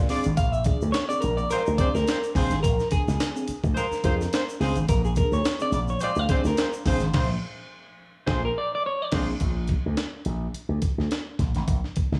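Gritty and funky, this excerpt from a longer piece grooves at 106 BPM in 4/4 with a 16th-note swing, sitting in Bb mixolydian over a Bb9 chord that resolves to plain Bb at 9.4 seconds. Up front, a slap bass runs through an envelope filter, bright, growly and punchy, while a compressed, sampler-style breakbeat kit with a thumpy kick, high-tuned snare, hi-hat and crash carries a tape-warm grit. A dark, clean semi-hollow electric guitar plays fingered accompaniment with tremolo, and a clean electric guitar solo runs from the start to 9.4 seconds. Behind them, a tight horn section with light vibrato, a smooth top and octave doubling plays a second line, a mellow tine electric piano adds stabs through its built-in speakers, and a grainy, band-limited vintage tube shaker sits in the background. The band hits an accent from 7.1 to 9.4 seconds, after which the horns, piano and guitar drop out, leaving bass and drums to close the final bars in light studio reverb.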